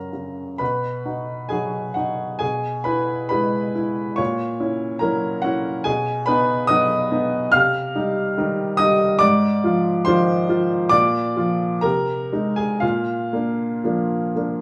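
In a rubato 2/4 pulse drifting between 57 and 73 BPM, this passionate romantic character piece for solo upright piano opens in B major, its clear, woody tone and long sustain sitting up front in a moderate studio reverb as the harmony moves through E/B and F#7/A# before turning toward Cm, Fm7/Ab and Bb by 10.9 seconds in this brief excerpt from a longer work.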